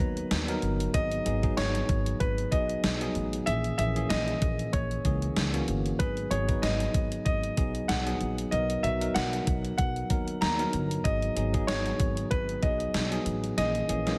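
Dramatic and nostalgic, this short cut from a longer 1980s-style pop piece moves at 95 BPM in G# minor with a light 16th-note swing, cycling through Bmaj7, G#m7 and A#m7b5 chords. A clear, polished concert grand piano with short sustain and a touch of digital delay carries the melody over a bell-like, bright tine electric piano, while a woody, gut-string upright bass plays pizzicato underneath. Up front, a tape-warm, sampler-style drum machine punches out a thumpy kick, hi-hat and a gated-reverb snare, closing with a drum fill at 13.6 seconds, all set in a light reverb.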